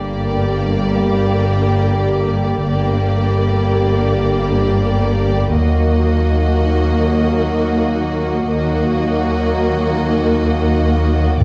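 A timpani stroke on G2 lands up front at 11.4 s, the loudest moment of this dark, heroic cinematic cue and the point that the build-up drives toward. Before it, the strings and brass sustain together from 0.0 s, with a clear double bass section up front and expressive cellos in the background anchoring the low end. Violas add a rich, intense accompaniment behind them, while two smooth violin lines with vibrato carry a lush melody and a second line. Mellow, distant French horns and a tight, vintage-toned trombone section hold sustained chords in the background as the harmony moves from G minor to E-flat minor at 5.6 s. A moderate scoring-stage reverb gives the passage, cut from a longer piece, a dark, warm sound.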